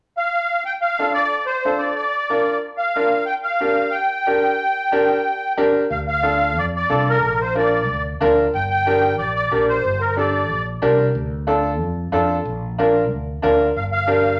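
Danceable and passionate, this latin cumbia excerpt in G minor moves at 183 BPM, with a reedy, shimmering musette accordion carrying the melody up front from 0.2 seconds, a brilliant, woody upright piano accompanying from 1.0 seconds, and a round, dark fretless electric bass joining at 5.9 seconds beneath Dm, Bb and Gm chords, all set in a large studio reverb.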